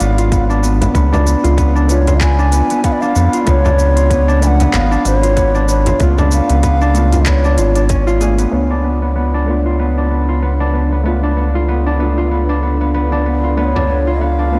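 This earthy, mystical organic downtempo excerpt opens with a breathy bass bansuri melody with vibrato, sent through delay and shimmer reverb, over up-front, thumb-plucked concert harp arpeggios, a round, dark analog bass, a very quiet detuned chord stab, a faint quartz singing bowl, and a swung groove of crisp hi-hat, cabasa and handclaps with a tight background kick and soft-handed frame drum, until the beat falls away by 8.5 seconds, a blurred granular cloud pad with sidechain pumping enters at 10.5 seconds, and the bansuri returns briefly at 13.6 seconds, all in a blown-out, overdriven mix.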